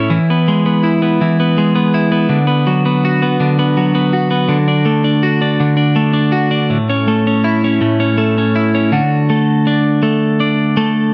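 A swaying 6/8 lilt at 54 beats per minute, counted in dotted quarters with a straight feel, carries this romantic pop excerpt, played by a lone twelve-string electric guitar that moves through E, Bm/D, D and A before settling on D as a new section begins at 8.9 s. The picked guitar sounds clean, twangy and compressed, sitting up front with spring reverb. The whole short passage, ending at 11.1 s, has the close, dry character of a 1970s-style studio recording with only light room reverb.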